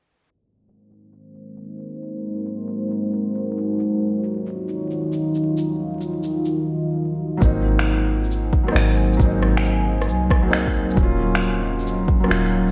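This nocturnal, rainy future garage excerpt opens under a filter sweep and a bed of vinyl crackle. Overdriven electronic shaker, finger snaps and rim click enter at 0.7 seconds with a swung sixteenth-note feel, sounding re-recorded in a large room. At 1.5 seconds a deep, moody ambient pad fades in, a detuned sawtooth unison over a sine sub octave with chorus and its own reverb, pumping against the beat as it alternates between Ab7 and Ebm7. At 7.4 seconds the second section arrives: an overdriven electronic kick lands alongside a soft, round 808-style bass that decays darkly and pumps in the same way. At the same moment a felt-muted upright piano adds intimate, mellow accompaniment with audible action noise and a vintage thin-felt tone, trailed by analog delay. A low-pass filter and light reverb keep the whole mix hushed and shadowy.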